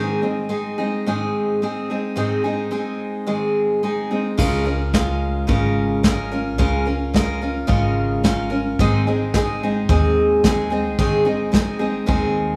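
This acoustic folk piece for a small band is pastoral and hopeful, moving at 109 BPM in a straight 4/4 in Db major. A picked steel-string acoustic guitar opens alone, sitting up front with an auditorium-style body as it lays down the accompaniment over an Ab chord. At 4.4 seconds a pizzicato upright bass and a soft brush drum kit join in. The bass has a woody, thumpy tone with steel strings, and the drums pair a punchy kick with a medium-tuned snare and crash cymbal, played with brushes in a small-room sound. The harmony shifts to Db6 before returning to Ab, and the drums drop out at 12.2 seconds just before this excerpt ends. A light studio reverb gives the ensemble a gentle sense of space.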